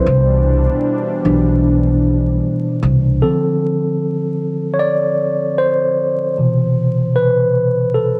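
A clean tine electric piano with a cassette-tape tint sets the tone of this reflective, melancholic lo-fi hip hop fragment at 76 BPM in D dorian, swung on the sixteenths. From the first moment it sounds together with a woody pizzicato upright bass up front and a smooth, detuned sawtooth pad softened with chorus, all resting on a Cmaj9 chord. At 3.2 seconds the bass and pad drop away, leaving the electric piano alone to move through Dm7 and Cmaj7 amid vinyl crackle and a moderate studio reverb.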